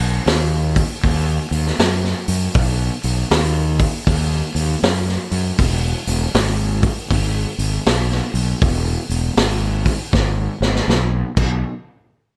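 A growly, overdriven fuzz bass and a punchy, dark-cymballed vintage drum kit kick off this raunchy, driving blues rock and southern rock power-trio excerpt at 79 BPM with a swung 4/4 feel, both parts up front in a dry, slightly lossy mix before a drum fill arrives at 10.1 seconds.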